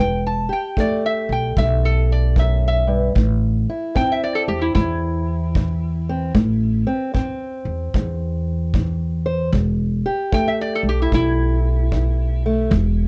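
Soulful and mournful, this short excerpt from a longer acoustic country blues piece moves at a slow 75 BPM with a swung feel in E minor, shifting from Em to Am at 3.2 seconds and back to Em at 9.5 seconds. Up front, a metal-body resonator guitar played with fingerpicks and a steel bar takes a nasal, metallic slide solo throughout, over a fingerpicked old ladder-braced acoustic guitar whose aged strings sound dark, boxy and woody. A pizzicato upright bass with steel strings sits up front with a woody warmth, while a tight, smooth kick drum played with brushes enters at 0.8 seconds with a rolled-off top and a small-room feel, all in a dry mix with little reverb.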